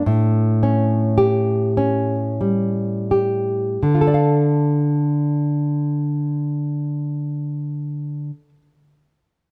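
Romantic solo classical guitar in D minor, wistful and intimate, this brief excerpt from a longer piece unfolds in a slow, rubato 6/8 at roughly 27-38 BPM, its up-front nylon-string guitar heard thumb-plucked with audible finger squeak through close, detailed, nearly dry microphones, slowing over the opening A7 harmony before settling onto D minor at 3.8 seconds.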